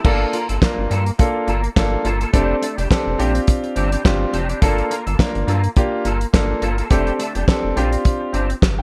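Early-eighties boogie funk with a danceable, funky mood and a swung sixteenth-note feel, this short excerpt is cut from a longer piece and cycles through lush minor ninth and sixth chords. A damped 70s drum kit sits up front with a fat snare, tight kick, dark cymbals, hi-hat, handclaps and crash, its dry, rolled-off sound given punch by gated reverb. Beneath it, a rubbery square-wave bass bounces through the low end with a hollow, resonant filter pluck and a moving notch, fast in attack yet sustained. A concert grand piano supplies the accompaniment with an intimate, natural tone, deep bass, long sustain and audible action noise. An electric guitar at the edge of break-up plays a twangy, fingered riff, its slightly broken-up tone thickened by ensemble chorus, while all four parts play throughout in a small room ambience.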